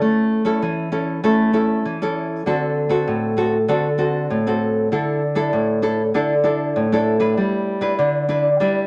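A studio reverb gives this short recording a lush, roomy glow, with a nylon-string guitar placed up front. It is a samba in a straight four, cut from a longer piece, and it carries a playful, sunny mood. The acoustic guitar plays solo for the whole 8.9 seconds, its full-bodied, classical tone ranging from A2 to B4. Fingerpicked notes ring out with a touch of finger squeak that makes the performance feel intimate and human. The harmony moves from A to D7 at 2.5 seconds, then through Dsus2 before settling on G6 at 7.4 seconds.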